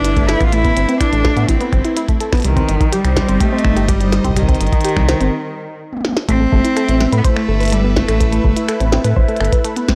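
A straight 4/4 pulse at 125 BPM drives this eerie, intricate IDM cut in A minor, with a deep analog kick entering at 0.2 seconds under a glitchy kit of finger snaps, clicky hi-hats, a tiny snare and toms, and a round, dark analog bass sitting up front. Over the Amadd9 and Cm harmony, a swirling, detuned pad with phaser, chorus and vintage sampler grit holds sustained chords, while a warbling, lo-fi pluck spins arpeggios through chorus and tape echo. A nasal, boxy solo cello carries the melody with vibrato and analog delay until 8.9 seconds, and a break at 5.3 seconds ends in a drum fill, all in a dry, gritty hardware recording with transformer saturation.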